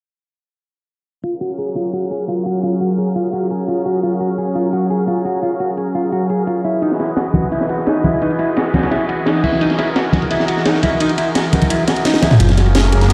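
At 1.2 seconds this lush, warm liquid drum and bass excerpt at 172 BPM opens with a thick, warbling unison pad holding sustained chords over Gbmaj9 and Emaj9, a dark, clean electric guitar playing fingered, filter-swept arpeggios through tape echo, and a layered electronic garage kit with a cracking snare and bright hats. From 6.8 seconds a gritty, saturated breakbeat kit with a high-tuned snare and rolled-off cymbals joins, soon followed by small-room congas. After a drum fill, a deep, rumbling detuned saw bass lands up front on Gb1 at 12.4 seconds under a faint riser, the whole mix sounding like a big sound system playing in a bare stone room.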